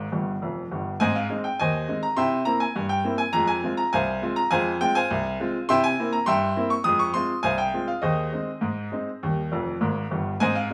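Moving in a straight 2/4 at 102 BPM, this short ragtime piano piece in Ab major has a playful, cheerful bounce, carried entirely by a solo baby grand piano with a brilliant, open tone that sits up front across a span from F1 to Eb6. The piano opens with a brief fill before the main section begins at 1.0 seconds, cycling through Ab, C7 and Fm harmonies, and a second fill arrives near 9.5 seconds before the clip cuts off. A moderate large-studio reverb gives the sound a live-in-the-room feel.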